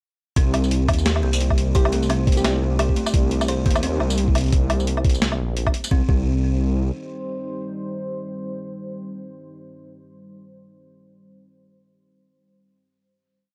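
At 0.4 s this tense, dark half-time drum and bass piece in C minor at 173 BPM drops in with a gritty, pitched-down thumpy kick, a sparse swung boom bap kit of high-tuned snare, closed hat, tambourine and low woodblock, a deep, rumbling detuned saw bass playing long gliding notes up front, and a bright, buzzing kalimba looping a 10-step sequence that drifts against the bar. From 1.3 s a moody ambient pad with slow attack, chorus and sidechain pumping sits in the background, a round, keys-like FM lead adds a brief G4 phrase with phaser and vibrato around 1.8 s, and the pad's final chord rings alone until 9.4 s on a dry, cassette-tape recording.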